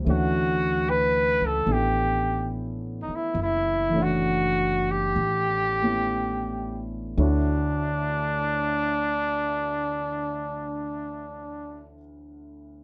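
A trumpet carries the melody in this tender, late-night jazz ballad, sitting up front with a light vibrato and a warm, roomy tone that still feels slightly distant. Beneath it, a baby grand piano plays the accompaniment with a natural sound and long sustain, opening on a lush Dmaj9 chord. A pizzicato upright bass on steel strings adds a woody, thumpy low end. The tempo is slow with a gentle swing, and it gradually eases back over the first 7.2 seconds before the music moves into a new section. Moderate studio reverb gives the whole a cozy sense of space. This is a short cut from a longer piece, with the piano ringing on alone until 12.8 seconds.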